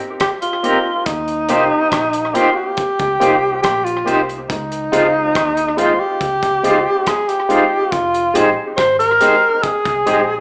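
Heard through a small speaker with moderate large-studio reverb, a band playing live in one room delivers this sweet, tender lovers rock reggae fragment at 70 BPM in a straight 4/4, moving through Abmaj9, Eb6, Dbmaj9 and Fm7 in Eb mixolydian. An up-front alto saxophone carries the melody with vibrato, a soft attack and a smooth top, while a cloth-damped, gritty drum kit of hi-hat, tight kick and rim click and an intimate grand piano with audible action noise both carry tape echo. A bright, clean semi-hollow guitar adds stabs with tremolo from 0.6 seconds, and a dark, round, foam-muted fingered bass sits low in the mix from 1.1 seconds.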